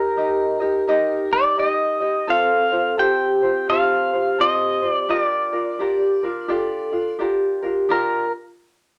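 An up-front, twangy electric pedal steel guitar carries the melody from the first moment with fingerpicks, slide and volume swells, while a mellow, airy vibraphone with soft mallets and slow motor vibrato rings out a second line and a bright, fingerpicked acoustic tenor ukulele adds light accompaniment, giving this relaxed, dreamy Hawaiian excerpt at 85 BPM a gentle swing in Bb major as the chords move from Eb to F to Bb6 within a small room's moderate reverb.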